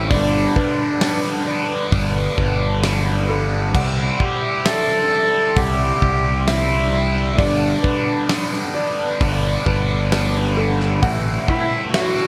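A light, small-room reverb frames this soaring, euphoric post-rock excerpt at a slow 66 BPM in straight 4/4, cut from a longer piece and moving through G, Cadd9, G and Am7. A distant, bowed cello carries the melody with a soft, sul tasto attack and a pure, floating tone touched by slapback echo. Up front, a bright overdriven electric guitar plays a picked riff through a phaser, while a round, dark fuzz bass drives the low end until it stops at 11.4 seconds. A big acoustic rock kit enters at 0.1 seconds with a fat snare, punchy kick, crash and hi-hat, its top rolled off and its mids pushed forward. Behind them, a mellow felt-muted upright piano arpeggiates intimately with its own slapback echo, and a very quiet, detuned analog pad sustains deep, moody chords with chorus and phaser.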